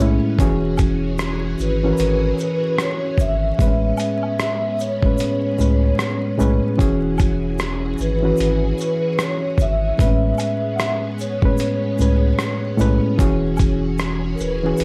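A loose, swung groove at 75 BPM drives this melancholic, nostalgic lo-fi hip hop cut, taken from a longer piece, with a dusty sampler-style drum kit up front whose gritty, compressed sound carries a thumpy kick, hi-hat, rim click and shaker, re-recorded in a large room. Beneath it, a deep, thick saturated sub bass holds the low end while a reedy electric piano, clean and direct with a cassette-tape tint and a low-pass filter, plays the accompaniment up front. A bright, shimmering string machine with vintage violin tones and ensemble chorus quietly sustains slow-attack chords. At 0.4 seconds an egg shaker, group handclap and woodblock join faintly, close and dry, and at 1.6 seconds a mellow, dark vibraphone with soft mallets and fast motor vibrato takes the melody with a metallic, ringing tone. The harmony sways between E69 and Amaj9, all wrapped in light reverb and a steady bed of vinyl crackle.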